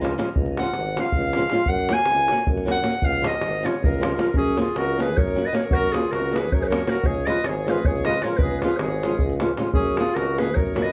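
A clarinet, up front and roomy with a tape echo, takes an exuberant, virtuosic solo in this Balkan wedding-band excerpt, entering at 0.6 seconds over a brisk 7/8 groove at 312 BPM with a straight feel in Db major. Fingerpicked flamenco guitar with audible finger squeak, a warm tuba bass with vibrato and a tight davul drive the accompaniment. At 4.4 seconds the key shifts to F# major and a reedy, dark accordion with slow beating joins as a second line, all heard from further back in a small room.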